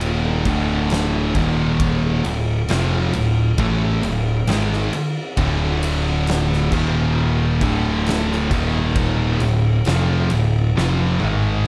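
Stoner and doom metal at a crawling 67 BPM in 4/4, this short excerpt carries an ominous, sludgy mood built around D, moving between D5, Eb5 and D minor. Three distorted guitars play the riff together throughout, sitting in the background: a thick, dark fuzz guitar, a compressed fuzz guitar, and a bright, high-gain guitar that is double-tracked. Beneath them, a growling picked electric bass, recorded direct and amped, adds overdrive and tube saturation to the low end. An oversized, low-tuned acoustic drum kit with a boomy kick, fat snare, dark cymbals, toms and a pumping big-room character brings a gritty, saturated weight. A drum fill arrives at 10.8 seconds, and the kit stops at 11.4 seconds while the guitars and bass carry on to 11.7 seconds, all in a dry mix with little reverb.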